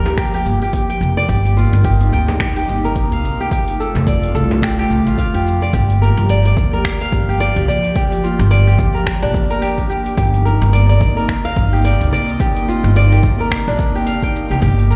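Earthy and mystical, this organic downtempo piece in a swung 4/4 sets a ringing, crisp kora playing fingerpicked arpeggios, roughened by vintage 12-bit sampler grit and digital delay, over an airy, breathy pad of sustained chords with chorus, phaser and sidechain pumping. An up-front, woody pizzicato upright bass, also pumping with the sidechain, plays alongside a punchy overdriven electronic kick and a deep house kit of finger snaps, metallic hi-hats and shaker. A small, saturated frame drum sits in the background only until 4.6 seconds, and the whole excerpt sounds as if played on a big sound system in a bare room.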